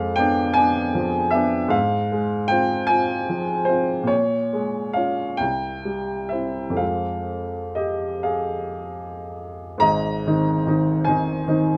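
Closely miked and lightly reverberant, this wistful, melancholic fragment of a romantic classical nocturne features a solo upright piano with a woody, natural tone and long sustain, sitting up front as it moves in a rubato 6/8 at 35-52 BPM in F minor, tuned to A4 = 444 Hz, and passes from Fdim7 through Fm/Ab, Bbm7 and C to Fm before a new section opens on Ab at 9.8 seconds.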